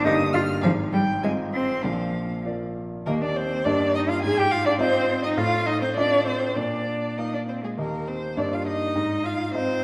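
In a rubato 2/4 at 102 BPM, this spirited, graceful classical-period piano trio movement in Eb major features an expressive, distant-sounding violin melody with vibrato and portamento, a rich, smooth cello second line, and an intimate grand piano accompaniment with audible action noise, all playing throughout the 9.8-second extract in a wet scoring-stage reverb.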